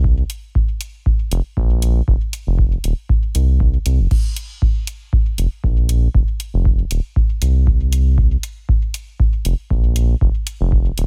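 A steady 118 BPM dub techno pulse in 4/4, lightly swung on the sixteenths, is driven by a dry, up-front electronic kick with a tape-warm depth, while a layered deep house kit adds dark hi-hats and crash cymbal well back in the mix from 0.3 seconds. A round analog bass, blending sawtooth and sine tones with a touch of ring modulation, sits up front in the low register with fast attack, sustained notes, an evolving tone and sidechain pumping across this hypnotic, meditative excerpt cut from a longer piece. The whole sits in a digital ambience.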